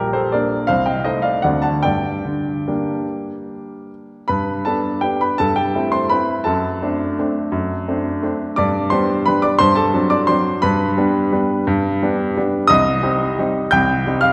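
Wistful and elegant, this short classical piano waltz sways in 3/4 with a rubato feel, its tempo moving between 140 and 189 BPM. A solo baby grand carries the whole excerpt, sounding clear, present and up front as it ranges from Bb1 up to G6. The opening in G minor passes through Gm/Bb, Adim/C and D7 before settling on Gm, and at 4.3 seconds the music turns to G major. From there the harmony moves through Am7/G, D7/F# and D7/G around G before reaching a Cm chord at 12.7 seconds. A wet concert hall reverb with a two-second decay surrounds the piano, and the production leans dark and warm. The recording is cut from a longer piece and stops at 14.3 seconds.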